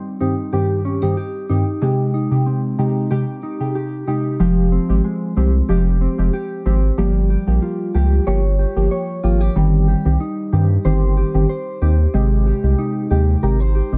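A dry mix carries this bouncy, hypnotic dancehall fragment at 93 BPM in a straight 4/4, cycling through chords like Cm/G, Abmaj7, Fmadd9 and Gm7b5. A clean, dark electric guitar plays mellow arpeggios dressed in lush chorus from the opening. Deep, detuned chord stabs sit up front with chorus, phaser and a filter sweep, and a thick, saturated sub bass arrives at 4.4 seconds to anchor the low end.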